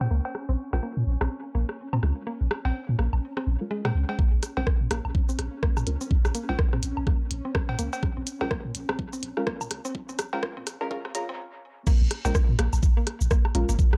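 Minimal techno at 125 BPM in Bb minor with a swung 16th feel, this sparse, clinical excerpt opens on a deep, punchy sine sub bass that pumps up front, a woody FM mallet pluck carrying 12-bit grit and digital delay, muted sawtooth dub chord stabs trailing echo, analog cowbell, rim click and woodblock in dub echo, and a swarming, nasal granular drone in the background over a Bbm7 chord. A layered, knocking kick arrives up front at 4.2 seconds, followed at 4.4 seconds by a click kit of clicky hats, rim, shaker and crash, as filter sweeps on the pluck and stabs drive the build-up. The drone ends at 11.4 seconds before a brief stop, and the drop lands at 11.9 seconds in a dark production with light reverb.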